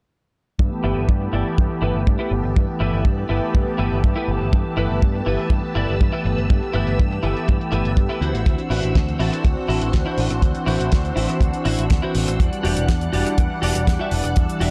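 A straight 4/4 groove drives this sunny, groovy nu-disco excerpt, built on a tight, dry kick that sits up front alongside a damped 70s drum kit with a fat snare, rim clicks and hi-hats softened by low-pass filtering and a filter sweep. A bright, punchy picked electric bass with an envelope filter sits forward in the mix, its low line also carried through a filter sweep. A smooth, detuned sawtooth pad with a soft attack and long release supplies accompaniment, coloured by chorus, cassette tape character, digital delay and sidechain pumping. Above it, a lush vintage string machine holds sustained full-ensemble chords with a sub octave, phaser, ensemble chorus, pumping and its own filter sweep. Entering at 0.8 seconds, a clean, compressed semi-hollow electric guitar plays a dark, picked riff treated with ensemble chorus, low-pass filtering and delay. The harmony moves from G6/9 to D9 at 8.2 seconds and Em9 at 12.4 seconds, all set in a studio reverb.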